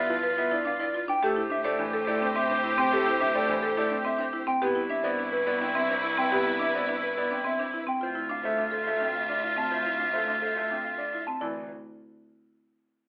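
An up-front, clear oboe carries a second line over a dark, clean electric guitar melody in this meditative, hypnotic piece of minimalist classical pattern music in 3/4, joined by brilliant grand piano accompaniment, woody, buzzing marimba arpeggios, lush bowed violin-section chords and a smooth, bowed cello bass, all heard through a telephone-like filter and a moderate large studio reverb in a passage cut from a longer work.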